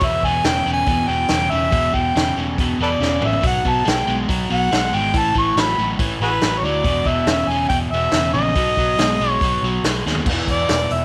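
Light reverb and studio-room ambience frame this driving, raunchy blues rock and southern rock excerpt at 141 BPM, where an up-front overdriven harmonica solo with scooped notes, tongue slaps and light vibrato rides over a double-tracked, compressed guitar riff, a dark, round, foam-muted fingered bass and a natural vintage kit with a punchy kick that drops fills at 3.0 and 10.1 seconds as the chords move from Em through B5, A5 and E5.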